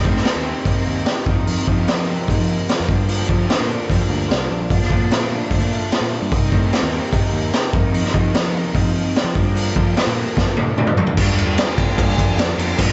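Wistful yet carefree, this short indie rock excerpt moves at 148 BPM in a straight 4/4, cycling through Cm7, F7sus4, Gm7 and Bbmaj7 before returning to Cm7. Two electric guitars sit in the background playing riffs: one runs through a small old amp with a slightly broken-up, lo-fi, compressed tone and slapback echo, while the other is a bright, overdriven garage guitar thickened with ensemble chorus and its own slapback. Underneath, a dark, round fuzz bass played with a pick carries the low end with overdrive. The raw garage drum kit sits up front and is the loudest part, gritty and saturated with a high-tuned snare, a boomy kick, crash, ride, hi-hat and toms, its top rolled off. A drum fill from 10.4 to 11.2 s leads into a brief new section that runs to the end, and the whole mix carries light reverb and small-room ambience with a dusky, muffled ceiling.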